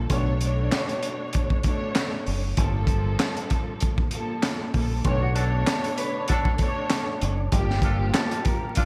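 Boom-bap hip-hop at 97 BPM in B minor, this dark, gritty cut rides a lightly swung 16th-note feel over Bm9 and Gm9 chords. A lush, bowed symphonic string section with vibrato and a soft attack opens the piece through a cassette-tape haze, joined by a round, up-front dub bass played with the fingers and a saturated breakbeat kit of tight kick, high-tuned snare, hi-hat and handclaps with a rolled-off top. At 5.0 seconds the music moves into a new section as a very quiet tonewheel organ enters with sustained chords, its rotary speaker spinning fast and its key click audible. A slightly broken-up electric guitar carries a short melody from 5.2 seconds, dressed in subtle chorus and delay, while a mellow, jazz-style horn section adds soft stabs in the background from 5.4 seconds. A lush hall reverb and vinyl crackle frame the bright 1980s-style digital production, and the passage is cut from a longer piece.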